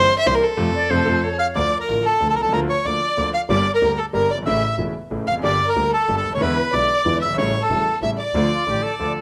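Tango in a melancholic, sultry mood, taken at 186 BPM in 3/4 with a rubato feel and set in D harmonic minor, heard as a short cut from a longer piece. A warm, expressive violin opens up front with bowed vibrato and portamento, playing solo over the first 1.6 seconds while the band adds an accent, and a pure, metallic flute slips in briefly from a distance. From 1.4 seconds the reedy, close-miked bandoneon takes the melody, dry and full at the front of the mix, with the violin continuing as a second line. Beneath them a clear, vintage-toned concert grand piano with deep bass supplies the accompaniment, and a focused, bowed double bass anchors the low end with its own vibrato. The harmony moves from Dm through Bb/D, Gm, A, E7 and A7 before returning to Dm, with the flute reappearing at 8.5 seconds. Plate reverb colors the violin, piano, flute and bandoneon inside a moderate studio room, and the overall sound has the rough quality of a home demo mix.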